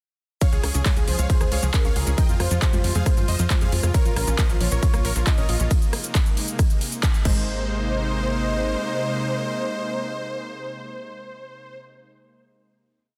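A straight four-on-the-floor pulse at 136 BPM drives this soaring, euphoric uplifting trance piece in Ab major, built on an overdriven, punchy electronic kick up front and a layered big-room kit of metallic hats, claps, rim, ride, shaker and crash bathed in studio reverb. Beneath them rolls a dark sixteenth-note sequencer bass, while huge detuned supersaw chords repeat a riff in thirds and sixths over a pedal note with tape echo. A lush slow-attack supersaw pad sustains beneath, while a velvety chorused lead with vibrato and a round, bright analog pluck arpeggio sit in the background, with the chords, pad, pluck and bass all breathing with sidechain pumping. The drums drop away at 7.3 s, and the chords, pad and lead ring on through the final hit until 11.8 s.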